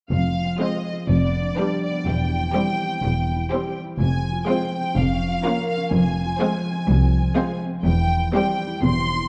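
A cinematic, whimsical film cue in F minor at 124 BPM in a straight 4/4, this short excerpt carries a quirky, mischievous, playful mood. A bowed violin section carries the melody high in its range, its tone rich and smooth with vibrato, set at a distance on a scoring stage. A concert harp, thumb-plucked and ringing, spins arpeggios beneath it, while a lush cello section and a focused double bass section hold down the bass from the very start. At 0.6 s a clear second violin line joins in the background, and a viola section enters with smooth, even accompaniment. The chords move from Fm through G7/F and C/E, touching Bbm/F and returning to Fm before closing on C/E, all within a dark production bathed in a moderate 2.0-second reverb.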